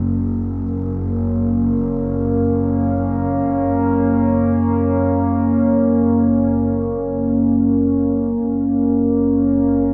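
Luminous and peaceful, this ambient fragment floats in free time, centred on an F# major chord that holds for its full 9.9 seconds. A symphonic double bass section sits low on a single F#1, its bowed ensemble tone clear and biting, with a light vibrato and a close, intense presence despite sitting quieter in the mix. Above it, an analog drone hovers between A#3 and C#4, built from sawtooth and pulse waves with pulse-width modulation, its character warm, warbling, evolving and vintage. The drone is mellow and up front, with a slow attack, long sustain and long release, and a chorus effect that thickens its sound. Both parts play from start to finish, bathed in a huge, wet reverb that places them in a vast, echoing space, as if lifted from a longer piece.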